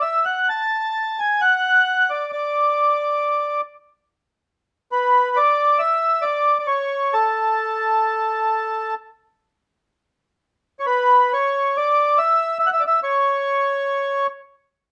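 A reedy, airy accordion plays alone and up front from 0.0 to 14.3 s in this pastoral, nostalgic fragment of a longer Celtic folk piece, moving in a rubato 3/4 at roughly 62-74 BPM in A major, its mellow tone touched by a slapback echo and light reverb in an open outdoor setting, with a new section arriving at 9.5 s.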